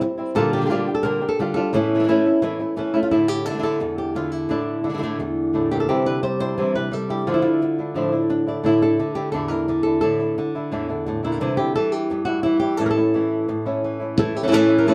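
Passionate and fiery, this flamenco excerpt pairs an up-front fingerpicked guitar melody, its finger squeaks audible, with a second acoustic guitar fingerpicking stabs beneath it, both playing throughout with a live-in-one-room feel in a wet studio reverb as the harmony moves through suspended and added-note chords before settling on A at 12.8 seconds.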